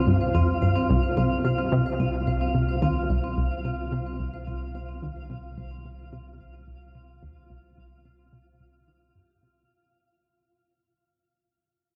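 A deep, round sine sub bass on C2 and a twinkling granular texture with an octave-up shimmer open this mysterious, cosmic piece of sequencer-driven space music in C minor at 109 BPM, cut from a longer work. An up-front, detuned sawtooth pluck with chorus and tape echo carries the riff between C2 and Eb3, while a metallic, ringing vibraphone with medium mallets and fast motor vibrato plays arpeggios through tape echo and shimmer reverb, fading out along with the whole passage. The dark, warm production sits in a huge, wet ambient reverb with an 8.8-second tail.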